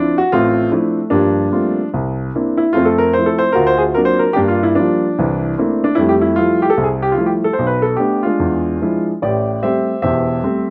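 A natural, up-front grand piano carries this short, sophisticated solo jazz passage cut from a longer piece in F major at 148 BPM, swinging its eighths with rubato across a range from E1 to E5 through rich changes such as Dm9, Gm11, D7alt and E7b9 before arriving on Am7 at 9.2 seconds, set in an open-air recording with light reverb.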